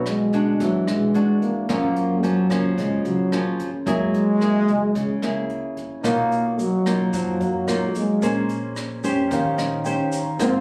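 A mellow, close-miked trombone with light vibrato sings a wistful jazz melody up front over fingerpicked nylon-string guitar, with a woody pizzicato upright bass in the background and a brushed drum kit with a boomy kick, hi-hat and rim click. The bossa nova moves at 110 BPM in a straight 4/4 through lush chords such as Gbmaj7, Bmaj9#11 and Eb13. At 6.0 seconds a warm, deep-toned grand piano and a grainy tube shaker join, and the piano plays a short fill at 9.3 seconds, all captured intimately on a phone in a club with light reverb.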